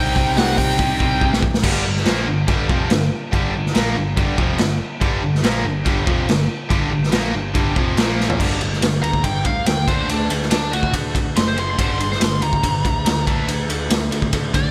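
A raw garage drum kit sits up front in this driving, aggressive hard rock excerpt, its punchy kick, medium-tuned snare, hi-hat, ride, crash and toms sounding gritty and saturated in a small, pumping room with a rolled-off top. A biting lead guitar with overdrive and tape echo opens with a brief phrase alongside a dark fuzz lead guitar carrying a second line with slapback echo, while a drum fill leads into the next section at 1.6 seconds. Behind them, a tight distorted guitar, a bright overdriven electric guitar and a double-tracked crunchy overdriven guitar with slapback echo stack the riff in the background, the crunchy part dropping out at 8.4 seconds. A growly, amped picked electric bass drives the low end throughout. From 9.0 seconds the biting lead returns for a solo that runs to the close, and the whole mix carries a lush hall reverb that gives it a big arena sound.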